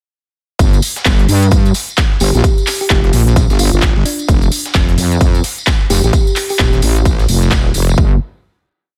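Bass house at 130 BPM in 4/4 with a 16th-note swing, aggressive and gritty in mood, built as one short drop that runs from 0.6 seconds to 8.0 seconds before a final note rings to the end. A punchy, up-front electronic kick plays four-on-the-floor, joined by a big-room dance kit of crisp closed and open hats and handclaps on the backbeat, tape-warmed and re-recorded in a large room. Beneath them sits a very quiet sampler-style breakbeat loop with edits, carrying a high-tuned snare and hats, while a jingly, vintage tambourine plays hand-played sixteenths. The wobble bass dominates, a heavy, saturated blend of detuned sawtooth and sine layers with chorus and sidechain pumping, shaping modulated phrases with changing wobble speed down to Eb1. From 2.2 seconds to 6.7 seconds a round, tine-like FM pluck resembling a thumb piano adds short answering phrases, dark and gentle, washed in lush chorus and tape echo, as the harmony settles onto F at 4.3 seconds within a digital ambience.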